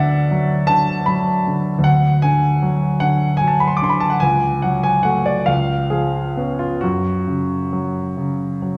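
Classical romantic character piece for solo piano in F# minor, stormy and brooding, unfolding in a rubato 6/8 at roughly 43-53 BPM, with a smooth, vintage-toned grand piano placed up front in a reverberant recital hall as the harmony moves from Bm/D through F#m/C# at 4.2 seconds and C#7 to a bare F#5 at 6.8 seconds, cut from a longer piece.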